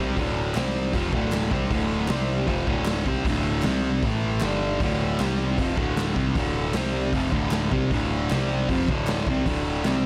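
A thick, double-tracked fuzz guitar sits up front, playing a menacing D minor riff that moves between D, C, A and G power chords and D minor at a driving 155 BPM in straight 4/4. Beneath it a growling picked bass adds overdriven punch, while a raw garage kit with a punchy kick, medium-tuned snare and hi-hat sounds saturated and dark in a stone room, its top rolled off. Hollow group handclaps sit in the background, and light reverb gives this gritty garage rock excerpt a little air.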